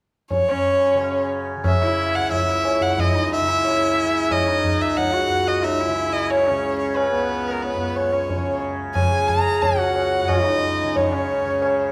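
This Hindustani classical excerpt, set in raga Bageshri on C#, moves at a steady 90 BPM in 4/4 with a straight feel and a meditative, longing mood. A single bowed violin carries the melody up front with a rich, nasal, slightly boxy tone, smooth and even with vibrato, ranging from A#4 to A#5. Beneath it, a softly plucked tanpura sustains a bright, buzzing, shimmering drone in the low register. A high-tuned tabla with a short ring keeps time from a distance, sounding as if placed in a large room. From 0.5 seconds a sarangi adds a focused, close second line below the violin, gliding with portamento and light vibrato while its sympathetic strings resonate. A moderate recital-hall reverb of 1.3 seconds surrounds the ensemble through to 11.9 seconds, where the clip breaks off from a longer performance.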